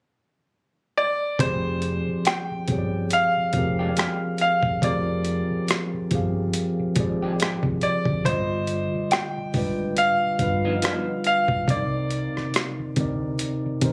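A bright grand piano opens this late-night R&B and neo-soul excerpt at 1.0 seconds, its brilliant, short-sustained melody sitting up front in the upper register, with F dorian colouring the harmony. At 1.4 seconds the band arrives at a slow 70 BPM with a light 16th-note swing: a mellow tine electric piano comping cleanly through its built-in speakers, a dark, round fretless bass thickened by ensemble chorus, and a gritty, pitched-down sampler-style kit of hi-hat, rim click and a thumpy kick, compressed and pushed forward. The chords move from an opening that carries chords only once the band arrives, landing on Fm69, shifting to G7b13 around 8.3 seconds and settling on Cm9. An electric guitar through a small old amp adds a slightly broken-up, picked second line with tremolo from 3.8 to 11.1 seconds. The whole take has the smooth character of a phone recording in a club room, with light reverb and compression gluing the parts together.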